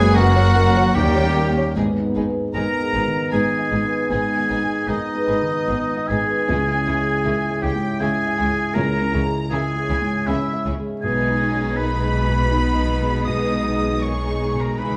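This sorrowful, bittersweet film-score cue opens mid-phrase with the full orchestra already sounding, while an airy concert flute drifts in the background only until 1.7 seconds. Set in G# minor at 78 BPM in a rubato 3/4, the harmony moves from F# and D#7 into G#m at 1.8 seconds, then through C#m to G#m/B. A dark symphonic violin section carries the melody high and smooth with light vibrato, as a distant, roomy oboe, a vintage-toned solo clarinet and a woody studio violin section shape second lines alongside it. A felt-muted upright piano, intimate with audible action noise, a ringing, fingerpicked harp playing arpeggios in the background and a very quiet viola section provide the accompaniment, while close-miked French horns hold sustained chords. Focused cellos and a rich double bass section anchor the low end, and a stone-room reverb lends the dark production its depth.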